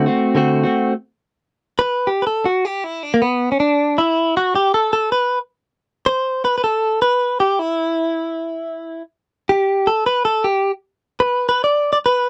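A dry, close 1970s-style studio sound with light reverb frames this laid-back, dreamy indie pop fragment at 105 BPM with a gentle 16th-note swing, where a clean, compressed, direct-recorded electric guitar sits up front and plays alone from 0.0 to 12.3 seconds, touching a D7 chord at the start before a picked solo from 0.9 seconds, its tone bathed in lush chorus and vibrato.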